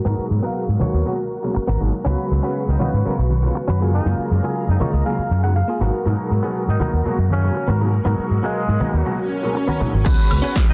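A round, dark, foam-muted electric bass sits up front in this nostalgic, sensual piece of filtered disco house, cut from a longer track, with sidechain pumping and a low-pass filter on it as on most of the parts while a filter sweep runs through nearly the whole excerpt. Over it, a boxy grand piano with audible action noise, deep bass and long sustain plays accompaniment through a phaser, and a bright, twangy clean electric guitar, recorded direct and compressed, picks a riff and adds a fill at 4.6 seconds. A lush, vintage sawtooth string machine with ensemble chorus and phaser holds soft-edged sustained chords in the background, and acoustic maracas and congas from a small room sit farther back. From 2.7 seconds a loose, jazz-style horn section carries the melody with light vibrato and octave doubling, roughened by 12-bit sampler grit and echoed by digital delay. An electronic swell leads into the final moments, where an overdriven, punchy kick and an analog drum machine with snare, hi-hat, shaker, woodblock and crash cymbal arrive at 10.1 seconds.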